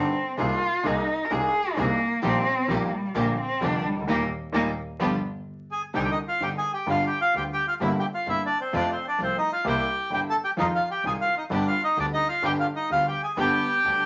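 A nasal, up-front bowed cello with vibrato and portamento opens this sultry, tense tango excerpt in a loose rubato, supported by a deep-bassed grand piano, gut-string chamber string stabs in the background and an earthy, biting bowed double bass, with a band accent at 4.1 seconds before a reedy, airy bandoneon takes the melody from 5.7 seconds, the whole set in a wet studio reverb with vinyl crackle.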